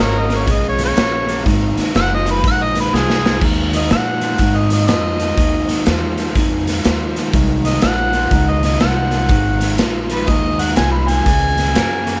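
Light reverb sets a raw, close sound for this gritty, laid-back electric blues shuffle at 122 BPM in 4/4, swung and centred on Ab mixolydian, cut from a longer piece. Two amplified, overdriven harmonicas carry the top: one plays the melody with light vibrato and tongue slaps, while the other holds a higher second line with scooped notes in a jazz style, both wrapped in slapback echo. An electric guitar through a small old amp picks a slightly broken-up, lo-fi riff, and a woody, growly upright bass with steel strings holds down the low end pizzicato over Db5 and Ab9 harmony. The raw garage drum kit comes in at 0.3 seconds, up front and saturated with a punchy kick, medium-tuned snare, hi-hat and crash in a pumping stone room. A drum fill at 2.9 seconds hands off to a harmonica solo from 3.4 seconds to the end, where the melody harmonica drops out and the second harmonica carries on.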